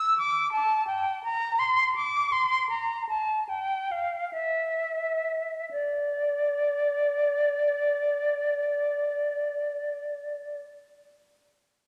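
A lone concert flute opens this grave, solemn baroque-style fantasia, its airy tone carrying gentle vibrato and soft attacks. The playing is free and expressive, unfolding in a compound metre with a pliant, rubato feel that slows over the first 5.7 seconds. A second section begins at that point, and the flute continues alone, moving between its middle and upper registers, until it falls silent at 10.7 seconds. Close-miked and up front, the instrument sounds bright and present, while a recital hall's generous reverb lingers around each phrase. This short passage is cut from a longer piece.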